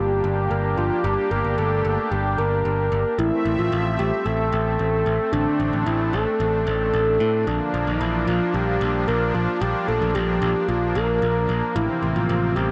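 A soft, octave-layered synth lead with a round, dark tone carries the melody through chorus, phaser and digital delay over a detuned sawtooth pad with tremolo and a growly, up-front picked electric bass, giving this nocturnal, moody synthwave excerpt in A phrygian at 112 BPM a lush hall-reverb glow as the chords move from Gm to Am to Bb and back to Am.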